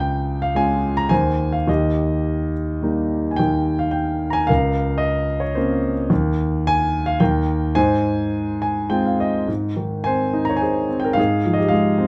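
Warm and hopeful, this short passage from a longer classical piece is a lyrical solo for concert grand piano in Ab major, moving in a flexible, rubato 3/4 at roughly 100-113 BPM. The piano plays alone throughout its 12.1 seconds, ranging from Db2 up to Bb5, and it sits up front with an intimate, natural character, deep bass and long sustain, with the noise of its action audible. The harmony opens on Db and passes through Ab/Eb and Eb before settling on Bbmadd9/Db, then briefly drops out of clear harmony before returning through Eb to Ab6. A piano fill at 8.3 seconds leads into a new section at 9.5 seconds, which rests on Ab and moves to Fm/Ab. Light reverb and a dark, warm production round out the recording.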